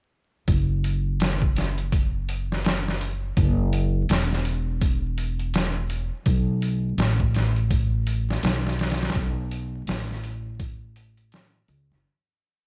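A gritty, pitched-down sampler-style drum kit with a thumpy kick, medium-tuned snare and hi-hat plays a compressed, looped breakbeat with edits, sitting up front with a tape-warm character from its re-recording in a small room, while a woody, pizzicato upright bass with steel strings sounds long dark notes in this brooding, cinematic trip hop piece at 83 BPM with a swung 16th-note feel, dry sound and vinyl crackle, both parts entering at 0.5 seconds before a fade-out from 8.2 to 12.0 seconds.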